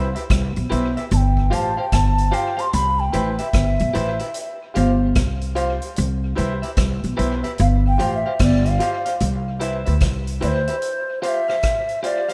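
Uplifting and warm, this roots reggae excerpt moves at 74 BPM with a swung 16th feel in C major. A hollow, pure bansuri carries the melody with vibrato and tape echo from 1.1 s, over a thumpy, woody upright bass that sits up front until 10.7 s, a vintage drum kit of tight kick, hi-hat and rim click with a rolled-off top, slightly broken-up, compressed electric guitar accompaniment with its own tape echo, and intimate grand piano stabs with audible action noise, while the harmony alternates between Cmaj7 and G7sus4 in a small room with light reverb and a rough home-demo sound.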